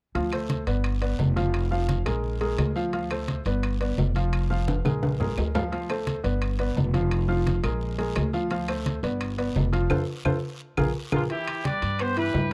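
A bright, present baby grand piano and a woody, thumpy upright bass open this festive, joyful salsa excerpt in C major at 172 BPM, the piano's action noise audible up close as it cycles through Dm7, G7, Fmadd11 and Bb7 chords. Low-tuned congas with a thick skin, ringing metal-shell timbales, a raspy guiro and dry claves sitting in the background fill out the percussion, all captured in the dry small-room sound of a close, 1970s-style studio recording. The dark, gut-strung pizzicato bass stays up front alongside the piano, while drum fills arrive around 4.7 and 10.4 seconds. A band accent lands at 9.9 seconds as the harmony moves to F and a bare Bb7, then a tight, punchy trumpet section enters at 11.1 seconds with a vintage pop-style vibrato. The passage settles on a rootless Cmaj7 as the horns take the melody.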